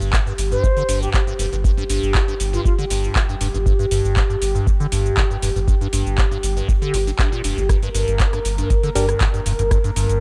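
A straight 4/4 acid house groove, driving and gritty, rides on a deep, dry electronic kick up front and an analog drum machine of metallic hi-hat, cabasa, handclaps and rim click, while a squelchy, resonant square-wave acid bass riff with filter sweep, phaser, tube saturation, analog chorus, tape echo and 12-bit sampler grit pumps alongside a round sine sub bass and a mellow, detuned sawtooth pad holding sustained chords with chorus; an airy jazz flute with vibrato and chiff sings through analog delay from 0.5 to 2.7 s, and a hollow, dark organ stab with chorus and tape echo lands at 9.0 s, all in a dry, gritty hardware-recorded sound from a cut of a longer piece.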